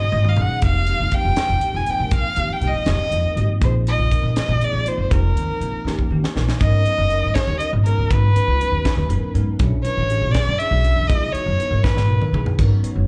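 Electric jazz fusion in a funky, nocturnal 6/8 at 80 BPM, cut from a longer piece and heard as a live club gig through the venue's PA, with an expressive, boxy bowed violin up front carrying the melody with vibrato, portamento, slapback echo and analog delay, a bell-like tine electric piano comping through ensemble chorus and slapback, a woody, thumpy pizzicato upright bass, and a crisp drum kit with a high-tuned snare and tight kick opening with a fill, as the harmony moves from suspended ninth chords in F minor to minor elevenths when the key shifts to G# minor at 6.6 seconds.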